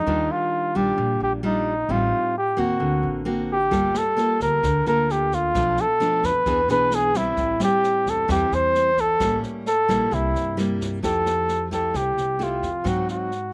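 Bossa nova fragment with a romantic, sophisticated mood, where a veiled, breathy trumpet in bucket mute carries the melody up front with light vibrato over bright, full-bodied fingerpicked nylon-string guitar with audible finger squeak and a woody pizzicato upright bass, while a brushed jazz kit with boomy kick, rim click and snare enters at 3.7 seconds, all captured dry as the chords move through rich extended and altered harmonies.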